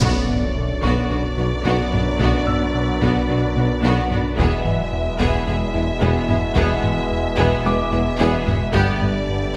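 A cinematic hybrid of orchestral and electronic film scoring, this tense, relentless passage in B minor drives forward at 110 BPM in a straight 4/4, moving from Bm to E at 4.4 seconds and G at 8.7 seconds. A lush, distant symphonic violin section carries the melody with smooth vibrato, while a closer, more expressive studio violin section traces a second line and a symphonic viola section holds accompaniment in the background. Bright trombones and dark, punchy French horns sustain chords behind the strings, joined by a swarming, nasal, granular drone with its own built-in reverb. The low end stacks a round analog bass riff over a pure sine sub bass, a very quiet dark tuba, warm, smooth double basses and soft-edged cellos, while a taiko ensemble struck with hard sticks pounds beneath. A glassy, crystalline wavetable pluck spins very quiet arpeggios through a filter sweep and chorus, a brilliant baby grand piano adds high, intimate texture with audible action noise, and an electronic riser and impact marks the opening 2.2 seconds, all set in a moderate scoring stage reverb.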